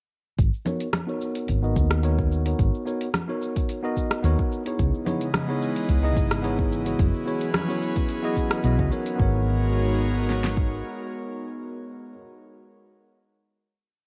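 A round, dark hollow-body electric bass playing a dub-style line opens this smooth, wistful sunset chillout piece in G# minor at 109 BPM with a light swing. It arrives alongside a deep house kit of deep kick and fat snare, plus a light lounge beat of cabasa, congas, metallic hats and rim click, while a clean tine electric piano with rootless, dotted-rhythm chords enters at 0.7 seconds through a low-pass filter sweep and tape echo. An airy, breathy chorused pad joins at 5.0 seconds over chords moving from G#m11 through C#m7 and F#7sus4. The lighter percussion drops out at 9.2 seconds, and the bass, kick and snare fall away shortly after, as the piano and pad hold a final G#m11 in a dark, lightly reverberant mix.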